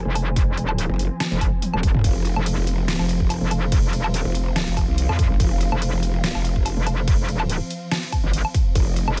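Heavy wobble dubstep in a chaotic, aggressive half-time swing, where a growling, detuned bass and a bright, metallic FM wobble bass, both overdriven and chorused, sit up front over a punchy electronic kick and an overdriven kit of deep snare, bright hats, crash, toms and woodblock that breaks into a fill at 1.6 seconds, while a veiled, con sordino string section holds lush bowed chords low in the mix under sidechain pumping and a low-pass filter, all in a fairly dry, close sound.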